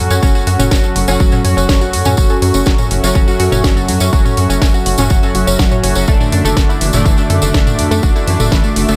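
A punchy, overdriven electronic kick sits up front in this hypnotic, driving melodic techno excerpt, re-recorded in a large room and layered with a house drum kit whose cracking snare, hi-hat and toms carry the same grit. Beneath it, a tight sawtooth sequencer bass with a filter pluck and fast attack pulses under sidechain pumping, while a jingly, close and dry acoustic tambourine enters at 0.1 s. A nasal, detuned analog pluck plays arpeggios through chorus, phaser and digital delay, and bold, brassy synth stabs with a filter sweep cut through the middle register, both breathing with sidechain pumping. Behind them, a moody pad built from square and sawtooth waves holds sustained chords in the background, and from 0.9 s a very quiet drone with moving, resonant overtones hums on a single low note. The harmony shifts to a new chord at 6.1 s, and the whole mix sits in a digital ambience.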